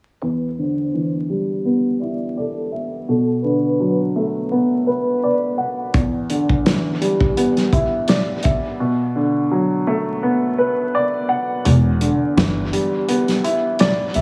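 Boom-bap hip-hop at 84 BPM in E minor, this reflective, dark passage is cut from a longer piece and rides a lightly swung sixteenth-note feel in 4/4. A dark upright piano with audible action noise and a vintage, cassette-tape character carries the accompaniment throughout, moving between Em7 and Bm7 while a filter sweep runs through the opening section. Above it, a vibraphone played with soft mallets offers a brief, ringing melody with fast motor vibrato and dub echo, heard only until 5.4 seconds. A soul drum kit with a tight kick, medium-tuned snare and hi-hat enters at 5.9 seconds, mid-forward with a rolled-off top and its own dub echo, then drops out before returning for the final section with its kick muted. A woody, thumpy pizzicato upright bass joins at 11.7 seconds, sitting up front beneath the returning Em7. The echo-heavy mix is wrapped in vinyl crackle, small room ambience and light reverb.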